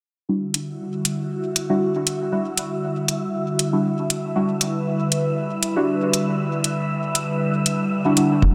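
A deep, warbling chord stab sits up front in this meditative, cavernous dub techno excerpt, its detuned Em9 voicing treated with chorus, phaser, dub echo and sidechain pumping, while an airy, breathy pad sustains alongside it through the same chorus and phaser. Overdriven, metallic electronic hi-hats ride prominently from 0.5 s with a small room reverb and a light swing, and a wind-like tuned noise texture drifts in at 1.1 s on its own built-in reverb. Only at 8.4 s do a punchy, overdriven kick and a round sine sub bass arrive, just as the cut ends.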